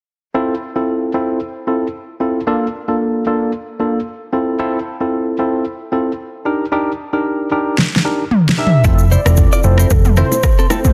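Afrobeats at 113 BPM in F major, this sunny, joyful excerpt from a longer piece rides a lightly swung sixteenth-note feel. A worn, slightly out-of-tune tine electric piano opens alone at 0.3 s, laying down clean, up-front chords that move from Fmaj7 through Bbmaj7 and Ebmaj7. A deep house drum kit bursts in with a fill at 7.8 s, its punchy kick, fat snare, rim click, shaker and toms pushed forward with overdrive. At 8.6 s a velvety synth lead with a soft attack, chorus and vibrato enters to carry the melody. From 8.8 s the groove fills out beneath it: a dark, round hollow-body electric bass sits up front on low notes, a bright, compressed clean guitar picks a riff through tape echo, and congas and bongos patter with soft hands in the background, all set in light digital ambience within a dense, heavily limited modern master.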